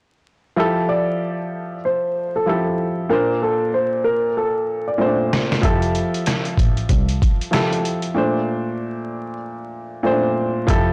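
Warm and confident, this boom-bap hip-hop excerpt opens on an intimate baby grand piano with audible action noise and cassette-tape coloring, beneath a dark, woody upright piano melody trailed by tape echo, before a gritty, pitched-down sampler-style drum kit with a thumpy kick arrives at 5.3 seconds and a smooth, bowed double bass with tube saturation joins at 5.6 seconds, the whole recording blown-out and overdriven with vinyl crackle and light small-room reverb.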